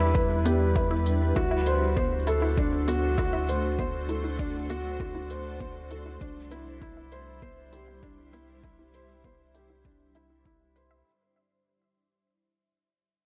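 Hypnotic and intimate, this piano and strings electronica excerpt sets a soft, felt-muted upright piano riff with audible action noise and tape echo up front over a round, dark analog bass, a blurred granular cloud pad of sustained chords, and a detuned unison pluck playing arpeggios in the background under a filter sweep, all carried by a deep electronic kick and smooth hi-hats through a fade-out, with sidechain pumping on the pad, pluck and bass as the chords move from Em7 to D7 and on to Cadd9.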